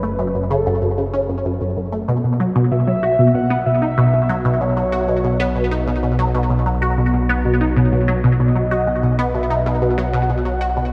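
A squelchy, resonant blip pluck sits up front from the first second, its riff colored by phaser, ensemble chorus and delay. Beneath it, a fat, wave-folded analog bass holds down the low end, while a shimmering, retro pulse-width lead with vibrato, chorus, cassette-tape coloring and delay carries a dark melody. This expansive, cosmic stretch of sequencer-driven space music moves at 95 BPM in a straight 4/4, shifting from F#m to Bsus4 at 2.1 seconds, all bathed in a dreamy, cathedral-like reverb.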